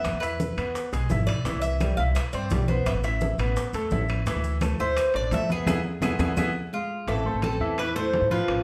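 A Cuban tres with doubled, metallic strings picks out the melody up front at the outset, over a brilliant grand piano whose arpeggios carry audible action noise, in this sultry cut from a longer son and guajira piece in A minor at 171 BPM. Beneath them, a dark, thumpy gut-string upright bass plays pizzicato close to the listener, while bongos, claves, timbales, maracas and congas sit in the background: tight, high-tuned bongos, woody vintage claves, ringing metal-shell timbales, grainy maracas and thin-skinned congas played with soft hands. The harmony moves through E, C, Asus2 and Dsus2 back to E before a band accent and drum fill push toward the Am that opens a new section at 7.1 seconds. The maracas drop out at 6.5 seconds, and a small, fingerpicked nylon-string guitar slips in with a second line at 6.7 seconds. A large studio reverb places the whole ensemble a little further back in the room, giving the piece an intimate yet roomy sound.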